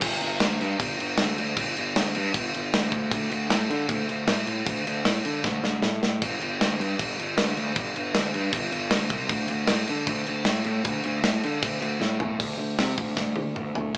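Hard rock at 155 BPM in a straight 4/4, menacing and heavy, with a fuzz-soaked, overdriven picked electric bass and a tight metal drum kit sharing the front of a small-speaker sound, the kit mid-forward with a tight kick, medium-tuned snare, rolled-off top, crash, hi-hat and toms, both playing as a band live in one room with light reverb, and drum fills at 5.4 and 12.0 seconds leading into a new section at 12.4 seconds in this cut from a longer piece.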